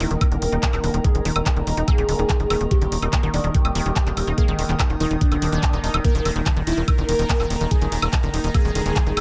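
An intense, psychedelic trance excerpt at 144 BPM opens with a tight, nasal sawtooth sequencer bass on Eb1 driving beneath a thick, bold unison lead with vibrato, phaser and tape echo, an up-front knocking kick joining a moment later, while a warbling detuned pluck riff with digital delay, bright hats with handclaps, ride and woodblock, a resonant overtone-sweeping drone on Eb3, and an airy, breathy pad sit in the background, the lead, pluck, drone and pad all pumping against the kick in a dry, close mix.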